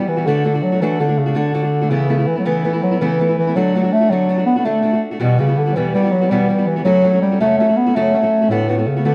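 A mellow bass clarinet carries the melody up front in a classical style, its low line bathed in plate reverb, while an old ladder-braced acoustic guitar fingerpicks a boxy accompaniment, with finger squeaks audible, through chords moving from D and Aadd9/C# to Emadd9, F#m and D6. This spirited, driving Celtic folk fragment in a straight 9/8 is cut from a longer piece and lasts about 9.1 seconds. It sits in a wet studio room with a dark, warm production.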